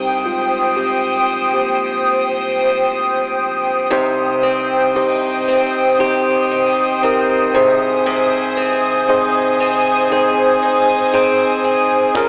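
A heartfelt, emotional pop ballad at a slow 58 BPM opens on a mellow tine electric piano solo with slapback echo, set up front over a bright, breathy pad treated with chorus and phaser and a thick, saturated sub bass sitting deep in the background. At 3.9 seconds a picked parlour steel-string acoustic guitar with fresh strings adds warm arpeggios as the harmony moves from C minor to A-flat at 7.5 seconds, and an acoustic drum kit with a tight kick, played with bundle sticks, arrives on hi-hat and kick only at 12.2 seconds. The whole cut sounds like a live gig heard through a venue's PA, with telephone-like colouring, plate reverb and the long ring of a recital hall.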